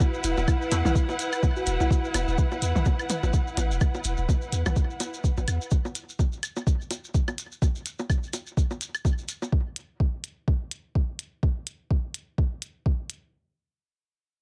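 Hypnotic and quirky, this minimal techno excerpt at 126 BPM with a swung 16th feel rides an up-front soft kick and clicky hi-hat, overdriven electronic bongos, woodblock and toms with delay, and grainy maracas, while a lush, distant string section pumps in the opening stretch, a punchy, pitch-dropping sine sub bass pumps until 5.6 seconds, an eerie, inharmonic FM synth bell with chorus drifts through a filter sweep in the background until 1.8 seconds, and a very quiet, detuned dub chord stab flickers at 0.7 seconds.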